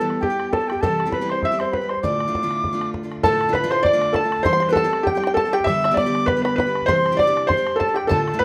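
Swung eighth notes drive this spirited Celtic reel in 4/4, and the short fragment, cut from a longer piece, has a lively, pushing feel. A felt-muted upright piano carries the melody up front, its soft, intimate tone coloured by thin felt and audible action noise. A reedy metal whistle sits above it on a second line, airy with a crisp, chiffy attack and vibrato, while a bright, full-bodied jumbo steel-string guitar is picked underneath as accompaniment. A damped, tight bodhran joins at 0.1 seconds, and at 3.2 seconds a twangy, percussive bluegrass banjo played with fingerpicks enters as another second line for the repeated section. The chords move from Em through C and Dm to C/E, G/D and Cadd9, all set in a wet small room that gives the rough home demo mix a close, lived-in sound.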